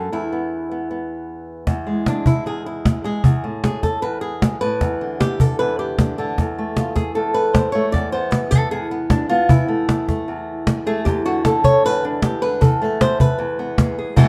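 A bright, fingerpicked flamenco guitar with fresh strings leads this dramatic, fiery flamenco excerpt in a straight 4/4, joined up front at 1.7 s by a snappy, close cajon with snares as the guitar launches into a solo over chords that circle from E through A5/E, G/E and Fmaj7/E, all set in a dark, warm production with a moderate stone-room reverb.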